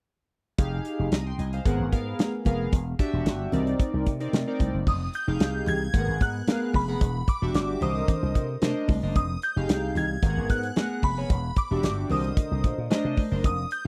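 A dry, close studio sound with a touch of room reverb frames this slick, danceable slice of early-eighties boogie funk, a straight 4/4 groove at 112 BPM in F dorian, cut from a longer piece. From 0.6 seconds a damped seventies drum kit sits up front with a tight kick, a medium-tuned snare, dark cymbals and a rolled-off top. Beside it, a growly, punchy slap bass runs through an envelope filter. A glossy, full-bodied polysynth with chorus spreads pulse-wave and sawtooth tones over a cycle of Fm9, Abm9, Em9 and Cm9 chords, its mellow sustained sound evolving. Very quiet, high-tuned congas with a ringing tone enter at 1.1 seconds. At 4.9 seconds a dreamy FM bell takes the melody in the upper register, detuned and warbling, its decaying notes carried by ensemble chorus and slapback echo.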